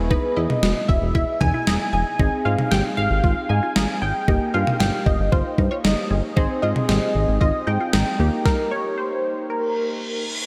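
This wistful, bright synth-pop excerpt opens with round, chorused analog keys, a squelchy resonant blip pluck tucked in the background under phaser and diffuse ambient delay, and a glossy, nasal chorused synth bass sitting up front. Almost at once a gated 80s digital drum machine joins with a thumpy kick, an overdriven gated-reverb snare and toms, alongside a punchy, detuned polysynth comp that carries the melody with chorus and ambient delay. The harmony moves through E, Ab, Eb/G, Ab and Eb in a straight four-beat feel. Everything sits in a dreamy mix soaked in huge ambient reverb. At 8.5 seconds the groove stops, leaving the keys and the comp ringing, until a reverse cymbal rises in at 9.7 seconds to close the cut.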